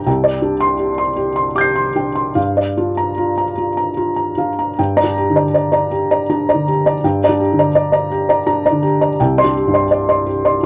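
Neoclassical minimalist piano in a rubato 3/4, this reflective, melancholic excerpt features a solo felt-muted upright piano, soft, mellow and intimate, sitting up front under close, detailed microphones with light reverb, ranging from C2 to C7 as its harmony drifts from Csus2 through Gm7 to G minor before returning to Csus2 at 9.2 seconds.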